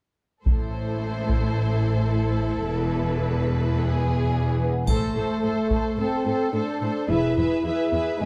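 A dark, warm production set in a moderate scoring-stage reverb opens this short cut from a longer cinematic orchestral score, heroic and brooding at 109 BPM in A harmonic minor, moving between Am and E. Lush, vibrato-rich violins carry the melody over a softer-attacked second violin line, woody viola accompaniment, and a bass foundation of focused cellos and bright double basses, while heavy-sticked taiko hits land at 0.5 s and again at 4.9 s. A distant, roomy French horn section enters at 4.6 s with sustained chords, and a faint triangle adds a glint at 4.9 s.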